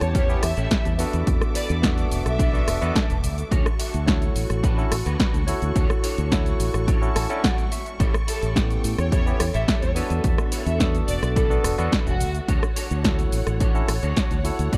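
Nu-disco with a feel-good, groovy lift, built on a punchy electronic kick, a tape-warm house kit of hi-hat, rim click, shaker and snare, and a bright, envelope-filtered fingered bass with sidechain pumping. A barky tine electric piano through a combo amp and a twangy, slightly broken-up electric guitar riff with chorus fill the middle, while a biting symphonic string section holds lush sustained chords in the background with sidechain pumping. A dark, woody violin section carries the melody through digital delay, entering at 0.0 and returning at 8.3 seconds, and a clean electric guitar adds short fills around 2.7 seconds, all within a dusky production with light ambience.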